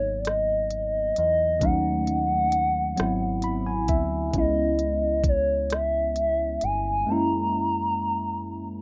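A slow six-eight pulse at 44 BPM, counted in dotted quarters with a straight feel, carries this yearning, late-night R&B fragment in G# minor, cut from a longer piece. An electronic, produced R&B drum kit of knocking kick, smooth hi-hat and rim click sits up front with a tape-tinged glow, playing from 0.2 to 6.8 seconds. Underneath, a dark, round picked electric bass, direct and amped, stays low in its register until it drops out at 7.0 seconds. A clean tine electric piano through a combo amp, treated with phaser, spreads the harmony through G#m7, D#m7b5, G#7alt, C#m7 and F#7, and slips in a fill between 3.0 and 4.3 seconds. Floating on top, a mellow gliding portamento lead with a triangle-and-sine tone, fast attack and long sustain sings the melody with vibrato, chorus and digital delay. The sound is dry and close, with the rough character of a home demo.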